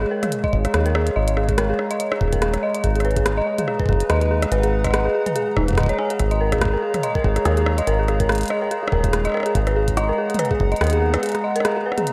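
Eerie, glitchy IDM at 143 BPM in G# dorian, where a hollow, flute-like pad with chorus and vintage 12-bit sampler grit holds chords over a dark, inharmonic FM bell arpeggio with chorus and digital delay, a rubbery, resonant acid bass sits up front until 11.2 seconds, and a clicky electronic kit of hats, rim clicks and toms joins a gritty, thumpy pitched-up kick, all in a lush hall reverb with a rough home-demo feel, taken from a longer piece.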